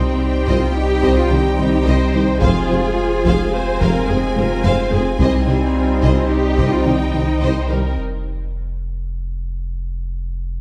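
A moderate scoring-stage reverb gives this brooding, relentless cinematic cue, cut from a longer hybrid orchestral and electronic film score, a spacious sound. At 108 BPM in a straight 5/4 in C minor, a rich, lush violin section carries the melody high between G5 and Ab5 over Cm, Fm and back to Cm. A second violin line with a smooth top and a close viola section sit in the background. Expressive cellos with a soft attack, woody double basses, a mellow tuba and an up-front, clean sine sub bass form the low end, with the double basses and second violins joining at 0.5 s. Very quiet French horns and a clear, vintage trombone section hold tight sustained chords beside a shimmering, retro pulse-width pad, while a gentle, warbling pluck spins arpeggios through the texture and a taiko ensemble played with heavy sticks adds very quiet weight. After the harmony drops out at 8.0 s, the deep sub bass sustains alone until 10.6 s.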